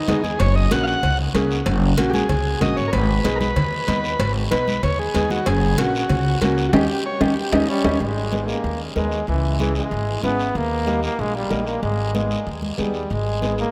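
A driving, danceable straight 4/4 cumbia groove at 189 BPM in G# minor, carried by a thumpy pizzicato upright bass up front, a woody, polished upright piano, soft-handed congas and ringing cowbell and timbales in the background, and a raspy guiro, opens this excerpt with a reedy, overdriven vintage combo organ with light vibrato soloing until 8.0 s, before a bright, close-miked trombone with vibrato enters at 7.7 s and takes the solo from 8.0 s as the harmony turns harmonic minor, all bathed in a moderate cathedral reverb that suggests a vast, echoing space.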